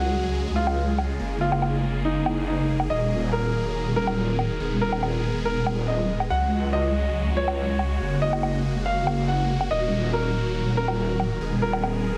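A clear grand piano carries the melody from the first moment, intimate enough that its action noise is audible, its notes trailing a dub echo above huge, bright supersaw chords run through a phaser and a detuned, saturated wobble bass with overdrive and chorus sitting up front. This is heavy, menacing wobble dubstep in Eb minor at 141 BPM with a half-time feel, the chords moving from Dbsus4 through Gbadd9 and Ebm to Abm/Eb. A layered electronic woodblock under a low-pass filter enters at 0.7 seconds, and the whole cut carries light digital ambience and a heavily compressed, radio-like sound.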